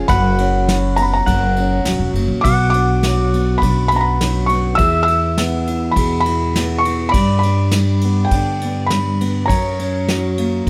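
A dark, felt-muted upright piano with audible action noise carries the melody in this intimate, reflective acoustic folk excerpt, over a twangy pedal steel second line, fingerpicked steel-string guitar with finger squeak, a woody, thumpy pizzicato upright bass and a soft brush kit of punchy kick, snare and ride that enters at 0.1 seconds, all in light reverb as the chords move from F#sus4 through Bm, E and G back to F#.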